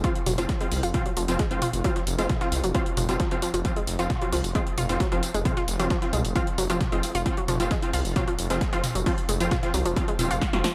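An overdriven, up-front electronic kick drives this dark, driving peak-time techno excerpt at 133 BPM in F minor, alongside a punchy, overdriven techno drum kit of hi-hat, snare, tambourine and toms, a very quiet, gritty tape-toned sampler-style soul kit, a menacing detuned saw bass that enters at 0.3 seconds with sidechain pumping, a round, nasal analog pluck riff with chorus and diffuse ambient delay, and bright, aggressive rave stabs washed in chorus, reverb and delay, all set in light digital ambience before a drum fill at 10.4 seconds.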